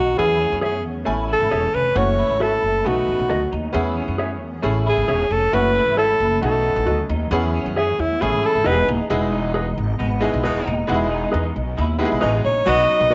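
Urgent and driving, this 134 BPM soul excerpt puts a breathy, intimate alto saxophone solo up front over a thumpy pizzicato upright bass, clear grand piano accompaniment, dark stabs from a mellow electric guitar, a hollow-body semi-hollow electric guitar riff with ensemble chorus in the background and a very quiet granular cloud pad, cycling through E6, Amaj7, F#m7 and B7 until a saxophone section with vibrato adds a second line at 10.0 seconds and the alto returns at 12.4 seconds.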